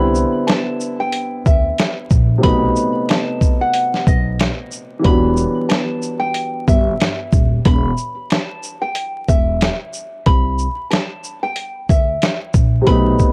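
Boom-bap hip-hop with a tough, gritty swing, built on a compressed, sampler-style drum kit with a thumpy kick up front, a woody pizzicato upright bass and a dark, mellow baby grand piano, while a bright fingerpicked nylon-string guitar carries the melody through tape echo and cassette coloring, finger snaps sit in the background, vinyl crackle runs underneath, and a drum fill closes the cut at 12.9 seconds.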